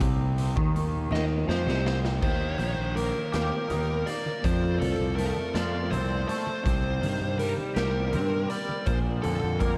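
A mysterious, hypnotic psychedelic rock excerpt in a slow 6/8 at 54 BPM, built on a Cm, Eb, F, Cm, Bb progression. A clean, twangy electric guitar riff doubled and phased sits over round, overdriven fuzz bass, a raw garage kit with a boomy kick and gritty, saturated room sound, and very quiet, damped congas. A compressed fuzz lead guitar melody enters at 1.1 s, alongside a drum fill, and trails a diffuse ambient delay into a dreamy mix soaked in huge reverb.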